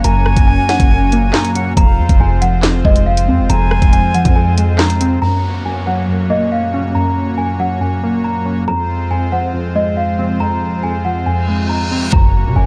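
A half-time drill groove at 139 BPM opens this cold, ominous hip hop excerpt, its electronic kit up front with a knocking kick, sharp snare, bright hats, handclaps and rim clicks roughened by vintage 12-bit sampler grit, while a punchy, heavy 808-style bass with a fast attack rides beneath. A delicate, bell-like celesta carries the melody throughout, joined for the first 4.8 seconds by an airy silver concert flute with vibrato and delay as a second line. Warbly lo-fi synth keys sit prominently in the accompaniment, nostalgic and detuned with chorus, while a soft pipe organ string-celeste stop shimmers quietly underneath with sustained, romantically voiced chords over a Gb to Fm progression. At 5.2 seconds the drums and bass drop away and a downlifter sweeps in, leaving celesta, keys and organ in the dark small-room ambience. A reverse cymbal rises from 11.4 seconds into an impact at 12.1 seconds, where the bass and a brief hit of the kit return.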